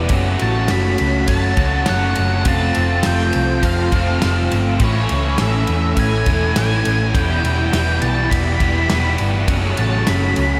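A round, dark hollow-body bass sits up front in this dreamy, hazy shoegaze and dream pop excerpt at 102 BPM in A major, joined by a loose, small-room indie drum kit on kick, snare and ride, a biting overdriven guitar riff washed in reverse reverb, a second overdriven guitar riff with subtle chorus set back in the mix, vintage sawtooth string-machine violas swirling with phaser and ensemble chorus, and an octave-fuzz lead guitar melody soaked in analog delay that enters at 0.4 s, all over an F#m, F, Amaj7, Em7 progression bathed in a lush 2.5-second hall reverb.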